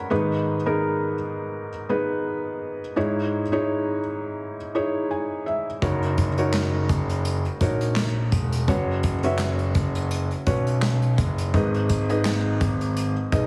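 Piano-driven pop with an uplifting, anthemic mood, set in 4/4 with a light swing on the sixteenths and taken from a longer piece. A felt-muted upright piano opens alone as accompaniment, its mellow, thin-felt tone soft and intimate, with audible action noise, and it plays a short fill from 4.8 to 5.8 seconds. At 5.8 seconds a clear concert grand piano enters in the deep bass register, polished and present with long sustain, while an unplugged acoustic drum kit joins with handclaps, hi-hat, a punchy kick and a medium-tuned snare played with bundle sticks. All three parts sit up front, with the drums carrying a studio-room character. The harmony moves from G#m through C#madd9, F#6 and Bsus2/F# before returning to G#m. Light studio reverb and small room ambience surround a heavily compressed, radio-style sound.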